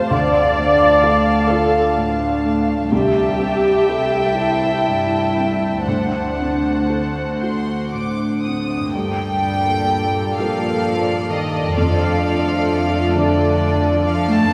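A slow, rubato 6/8 sways at roughly 38-44 BPM in dotted quarters, carrying this tender, uplifting film-score passage cut from a longer orchestral piece. From the start, a warm violin section sings the melody, bowed sul tasto, above a smooth chamber violin line with light vibrato. Woody, lush violas, a felt-muted upright piano with audible action noise, and a ringing, fingerpicked concert harp fill in the accompaniment, while pure, floating cellos hold the bass. The harmony moves through Dm, C6 and D7 before settling into F major at 8.9 s, where Gmadd9 and F6 arrive along with a very quiet, distant French horn section on mellow sustained chords and a dark double bass section joining the low end. With the piano and harp tucked in the background, the violins keep an intimate, close presence inside a wet cathedral reverb with a 4.6 s decay, recorded in a church or concert hall.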